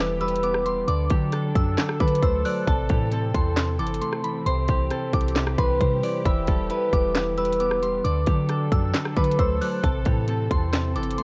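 A menacing, brooding trap excerpt opens with a ringing, fingerpicked concert harp carrying the melody up front, softened by a low-pass filter, while a soft, pure FM synth bell traces a second line high above it through chorus and digital delay. Beneath, a dark, clean electric guitar plays a fingered accompaniment, also low-pass filtered, and a distant, woody symphonic string section holds lush bowed chords sul tasto with vibrato in the background. A deep, boomy sine 808 bass with a fast attack and decaying tail anchors the low end. At 0.2 seconds an electronic trap kit arrives up front in a half-time feel, with a hard-clipped kick, sharp snare, metallic hi-hats, handclaps and rim clicks. The harmony cycles through Em, D, Am and C, and the dry mix is coated in worn, warbling cassette tape with a drifting pitch.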